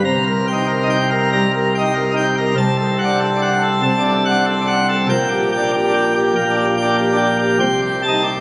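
A straight 4/4 pulse at 95 BPM drives this dramatic, stormy organ toccata in G minor, an 8.4-second excerpt cut from a longer piece. A solo pipe organ on full plenum sits up front, its brilliant mixtures and baroque voicing edged with chiff as it spans Bb1 to Bb5 over harmony moving from Cm7 through D7/C and Gm/Bb to Am7b5/C. Captured on a phone in a church, the sound carries a wet church reverb with a 3.4-second decay, along with club reverb and compression.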